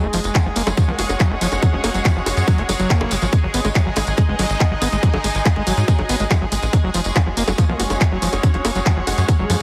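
A driving straight pulse from an up-front, tight electronic kick and a bright-hatted kit of bongos, handclaps and hi-hat, with a jingly background tambourine, anchors this alien, hypnotic psychedelic trance excerpt, where a punchy sequencer bass drives alongside a squelchy, gritty, distorted acid bass riff that pumps beneath a bubbling resonant filter texture, veiled muted strings and a faint formant-sweep wobble bass entering at 0.9 s, all under heavily compressed radio-like sound before a brief electronic swell at 9.4 s.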